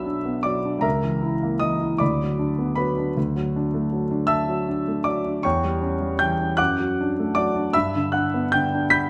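A romantic classical character piece for solo piano, passionate and bittersweet, unfolds in a flexible, rubato 6/8 as an intimate concert grand with deep bass and audible action noise sits up front under close, detailed microphones in a moderate recital hall reverb, moving from B minor through diminished passing chords toward D major and a closing G chord in this brief excerpt from a longer piece.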